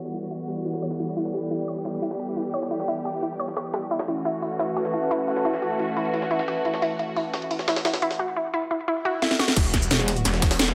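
The rhythm runs at 175 BPM in a straight 4/4, carried at first by a gritty, pitched-up jungle sampler-style kit of hi-hat, ride and a high-tuned snare, filtered and tape-softened, in this dark, mechanical drum and bass excerpt in E dorian. Above it, a lush bowed string section holds sustained chords from Emadd9 to F#m7, while a round, nasal analog pluck spins arpeggios through chorus and tape echo under a filter sweep, and a warbling, lo-fi tape-like pad adds nostalgic texture until 8.2 seconds, all three pumping against the sidechain. A background swell and a drum fill from an overdriven drum and bass kit, with cracking snare, bright hats, cabasa and crash, lead into the drop at 9.6 seconds, where the harmony returns to Emadd9. There a tight, overdriven electronic kick and a snarling, detuned sawtooth bass on E1 hit up front, joined briefly by a metallic FM wobble bass treated with chorus. 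The parts sit in a wet digital room reverb, and the piece is cut from a longer track.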